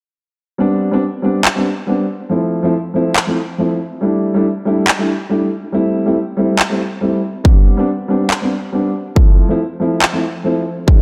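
A dark, mellow, boxy baby grand piano provides the accompaniment in this playful, euphoric future bass cut from a longer piece, its short-sustain chords moving through Gadd11, Fmaj7, Gsus2 and Am7/G from 0.6 s with sidechain pumping and delay. Up-front layered electronic handclaps with a tape-warm grain join soon after, and a punchy kick drum enters at 7.4 s, all riding a 140 BPM half-time feel in 4/4 with a 55% sixteenth-note swing, tuned to A4 = 436 Hz. A lush hall reverb gives the dark production its depth, and a very quiet electronic riser appears at 11.0 s.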